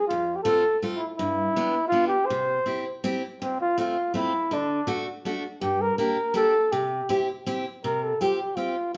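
A mellow flugelhorn opens at 0.0 s with a solo melody in a classical style, and a picked steel-string acoustic guitar joins a moment later at 0.1 s. This is jolly, festive alpine folk in 3/4 at 163 BPM with a straight feel, tuned to A4 = 437 Hz. The flugelhorn sits up front and carries the tune between C4 and C5, while the bright, auditorium-toned guitar, also up front and somewhat lower in the mix, supplies accompaniment from F2 to G4. The opening passage in C major moves through F, G and C before shifting to F major at 3.4 s, where the harmony travels through F, D, Gm and C and settles on Csus4. The band plays live together in one large studio, with a wet reverb of 0.9 s giving the sound a roomy glow. The passage is cut from a longer piece, and both parts play through to 9.0 s.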